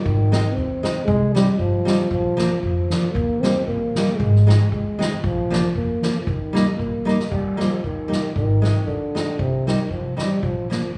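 A mellow, up-front euphonium opens this bouncy, festive alpine folk dance in Eb major at 116 BPM in a lightly swung 2/4, carrying the melody over woody pizzicato upright bass, a bright, full-bodied picked steel-string guitar and a soft-mallet drum kit with dark cymbals, fat snare and punchy kick, all set in a moderate recital-hall reverb, with a drum fill at 7.0 seconds leading into the repeat of the tune.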